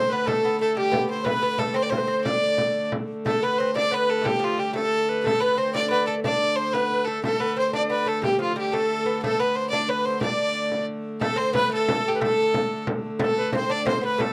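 A dry, close studio sound from a 1970s-style session, touched with light reverb, frames this driving medieval dance in a straight 6/8. Up front, a single bowed fiddle carries the melody with an earthy tone, a smooth top and light vibrato. An alto recorder adds a second line in the same register, airy and woody with tongued chiff and a slapback echo. Further back, a delicate fingerpicked lute on gut double strings, some of them octave-doubled, adds a lower second line, also with slapback echo. Beneath them a wheel-bowed hurdy-gurdy holds an even, rich drone, while a small frame drum played with soft hands enters at 0.1 seconds with a bright, compressed and saturated snap. The cut moves through three sections, shifting at 3.3 and 11.2 seconds, and carries an ancient character from start to finish.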